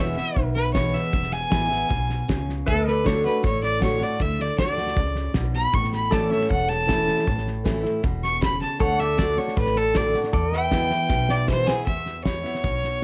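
Down-home and sunny, this honky-tonk and classic country excerpt moves in a straight 4/4 and sounds like a home recording on cassette with light reverb. A clear, earthy fiddle sits up front and takes a bowed solo with light vibrato from the start until 11.9 seconds, its tone carrying a cassette-tape colour. Underneath, a bright, full-bodied dreadnought acoustic guitar with fresh strings is picked as accompaniment, while a woody upright bass with gut strings gives thumpy pizzicato support. A clean, compressed electric pedal steel, played with fingerpicks and a slide, holds sustained chords with volume swells before dropping out at 11.9 seconds. The cloth-damped drum kit has a thuddy small-room sound with a fat snare, tight kick, hi-hat and a rolled-off top, also tinted by cassette tape, and it plays a fill just before a short new section begins as the harmony moves through E, D and A.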